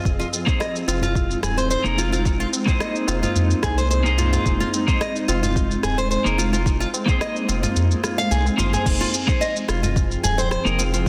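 Mystical and meditative, this short organic downtempo excerpt moves at 109 BPM in 4/4 with a light sixteenth-note swing, opening on Ab and shifting to Fm7 at 8.9 seconds. A bright, fingerpicked nylon-string guitar plays up-front arpeggios with tape echo over a cloudy, evolving granular pad with slow attack and its own reverb. A round, deep analog bass and a dark, compressed clean electric guitar with lush chorus and tape echo both pump against a soft electronic kick, which drops out at 7.8 seconds and returns at 8.9 seconds, while a small-room electronic kit adds crash, rim click, shaker and a softly clipped snare, and a low-tuned, dry tabla sits in the background, all within an echo-chamber reverb and a dense, heavily limited master.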